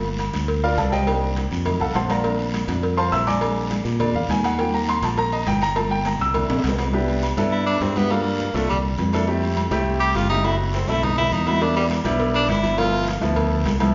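A present tenor saxophone takes the melody from 7.5 s in this lively, sophisticated Afro-Cuban jazz excerpt at a brisk 205 BPM in 4/4, following an opening piano solo from 0.0 to 6.9 s. The piano sounds intimate, with audible action noise, and the growly fingered electric bass sits up front, while the harmony moves through jazz chords like Gm9, F7b9 and B7b9 and settles into C major at 6.9 s. Behind them, high-tuned thick-skinned congas, ringing agogo bells and timbales, a tight dry cowbell, a raspy guiro and drum fills all share a reverberant recital hall sound with a dull top end.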